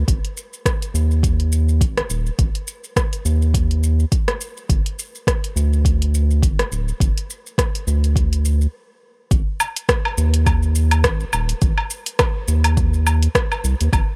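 A round, deep analog bass opens the excerpt, its square and sine tones dark and sustained with a fast attack, tube saturation and sidechain pumping, ranging from D1 to Eb2. At 0.1 seconds an electronic kick drum and a deep house drum kit of hi-hat, rim click, shaker and woodblock join in, both overdriven, layered and re-recorded in a small room. This is meditative, organic downtempo at 104 BPM in 4/4, with a 56% swing on the sixteenths. The bass, kick and kit all sit up front in a close, dry mix with little reverb. After a stop from 8.7 to 9.3 seconds, a new section begins and carries the groove until the cut at about 14 seconds.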